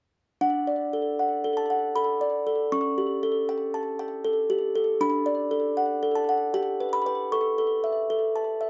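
In a gentle, straight three-beat lilt, this short classical lullaby for music box drifts by with a dreamy, tender mood, cut from a longer piece. A single music box carries the whole thing alone from 0.4 s to 8.7 s, its delicate, tinkling plucked tones sitting close and up front with the full body of a large box. A slapback echo trails each note, while a moderate studio reverb gives the dry, close sound a modest sense of room. The harmony moves from D through A7/C# and back to D, then steps to G and A near the end, keeping the phrase settled and sweet.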